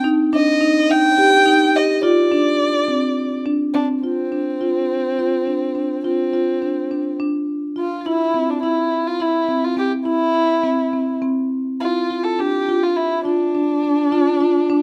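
Contemporary chamber music in an uneven 7/8 at 209 BPM in eighths, this hypnotic, urgent excerpt begins in D Phrygian before settling into D minor at 4.0 s, with chords moving from Eb through Dm7 and C to Dm. A dark, woody bowed violin sings the melody with vibrato while a marimba played with medium mallets carries warm arpeggios beneath it, both parts sounding up front for the full 14.8 seconds. Close, detailed microphones and light reverb keep the sound intimate and clear.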